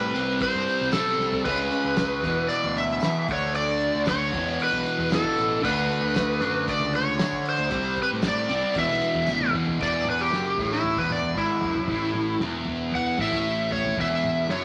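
Psychedelic rock at 115 BPM in a straight 4/4, hypnotic and trippy, with an up-front overdriven slide guitar singing the melody over a double-tracked fuzz guitar riff drenched in distortion and phaser, a round, punchy fuzz bass and a cloth-damped drum kit with a fat snare, tight kick and dark cymbals. A very quiet, jingly tambourine rides along from 0.9 to 9.4 seconds as the chords move through power-chord shapes and a Csus2, and drum fills at 1.2 and 9.3 seconds mark the way. At 9.8 seconds the harmony drops away for a slide guitar solo, all set in a wet large-studio reverb, in this excerpt cut from a longer piece.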